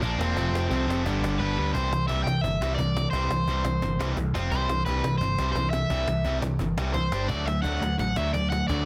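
Punk rock, upbeat and rebellious, cut from a longer piece, with a crunchy overdriven guitar carrying the melody up front beside a bright, distorted electric guitar riff and a growly, punchy overdriven bass. A compressed overdriven electric guitar riff sits in the background, dropping out at 1.7 seconds and returning at 7.3, while a woody cajon with faint snares keeps time from a live room behind the band, its kick and snare falling away briefly at 1.4 seconds. The sound is dry, dense and heavily limited, in a modern master.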